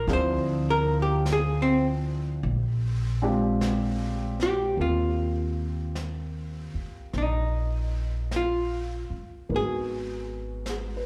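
Intimate and romantic, this slow jazz ballad moves at 51 BPM in 4/4 with a swung eighth-note feel, settling into Eb major from 4.8 s, and is cut from a longer piece. A clean, picked archtop guitar carries the melody up front with a dark, hollow-body tone and slapback echo, taking a solo through the opening 4.8 s. Behind it, a mellow upright piano with a woody, long-sustaining sound and its own slapback echo supplies the accompaniment, while a pizzicato upright bass, thumpy and up front, anchors the low end. A brushed jazz kit of snare and hi-hat sits far back in the mix, adding soft acoustic texture from 0.1 s. The harmony passes from Dm7b5 and Bb13 to Eb69 before shifting to Abm7 at 9.5 s, all heard as a live club performance through the venue's PA with light reverb and small-room ambience.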